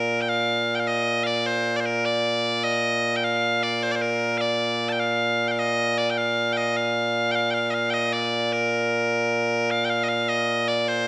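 Scottish traditional pipe music in 6/8 at 102 BPM, this short excerpt cut from a longer piece has a proud, stirring mood in B-flat major. A solo bagpipe plays loud and up front, its bright, piercing tone continuous from 0.0 to 11.1 seconds across a range from Bb2 to A5. The sound sits in a wet recital hall reverb within a dark production, with the opening section returning at 9.7 seconds.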